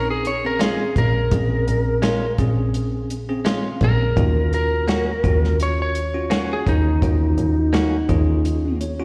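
A lightly driven lead guitar, dark, slightly broken-up and compressed, carries a mournful melody up front from the start, alongside a bright, bell-like tine electric piano and a bowed double bass that sounds close, nasal and earthy, with light vibrato and an airy bite. This soulful, straight-eighth soul blues piece, cut from a longer performance, gains its drum kit at 0.2 seconds: dry, dark and smooth, with a tight kick, a medium-tuned snare, hi-hat and a rolled-off top. From 0.6 seconds a twangy, direct-recorded clean electric guitar adds compressed picked stabs, and it shares a slapback echo with the lead guitar and the electric piano. The harmony moves from Bbm7 to Ebm7, and the electric piano closes with a short fill at 8.4 seconds. The sound is that of a live gig heard through the venue's PA, set in a recital hall reverb with light reverb and studio ambience.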